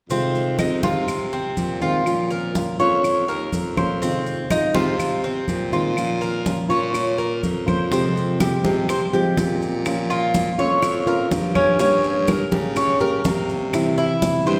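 A danceable, sultry Cuban son and guajira groove in F minor at 123 BPM opens with a picked, metallic Cuban tres playing up-front arpeggios on doubled strings, over a full-bodied, thumb-plucked nylon-string guitar, a raspy, gritty baritone saxophone carrying a punchy bass line, thick-skinned congas and grainy maracas. Woody claves join in the background at 0.6 seconds, and the harmony moves between Fm7 and Bbm before shifting at 7.9 seconds to Fmadd9, Bbm, Gdim and C, where round, low-tuned bongos enter very quietly. The whole cut is bathed in the wet reverb of a church or concert hall.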